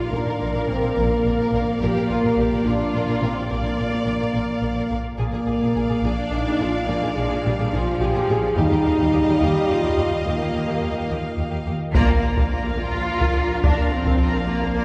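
Lush bowed strings and horns open this heroic, adventurous cinematic orchestral excerpt in Bb major at 71 BPM in 6/8: a distant, vibrato-laden violin section carries the melody over an expressive second violin line, focused violas, a smooth cello section and a rich double bass section, while a loose, clear French horn section holds sustained chords through Bb, Bb7 and Ebadd9, until compressed, saturated taiko drums struck with hard sticks join the band in an accent at 11.9 seconds, the whole ensemble ringing in a long cathedral reverb.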